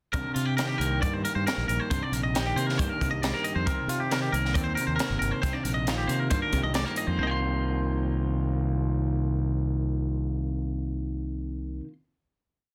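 Light reverb surrounds a dense, heavily limited modern master in this short, complete math rock and midwest emo piece, restless and wistful in C minor at 136 BPM in a straight 4/4. A crisp fusion drum kit sits up front with a high-tuned snare, punchy kick and hi-hat in a gritty, saturated pop groove, its small room pumping until the drums stop at 7.1 seconds. A twangy, bright, clean electric guitar picks a compressed arpeggio ostinato, while a dark, slightly broken-up guitar through a small old amp adds syncopated fingerstyle accompaniment with subtle chorus. Underneath, a growling fingered bass, overdriven, punchy and both direct and amped, drives a syncopated riff. The harmony moves from Cm9 through Eb6 and Cm11 before the guitars and bass settle on a final Cm7 chord at 7.2 seconds.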